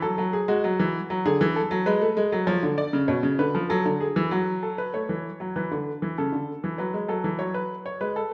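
In a straight 4/4 feel, this short cut from a longer baroque-style two-part invention gives a solo baby grand piano, clear, natural and up front with short sustain, a joyful, elegant classical voice spanning B2 to D5, moving through minor-key harmonies to a rootless A chord at 4.9 s inside the wet bloom of a recital hall.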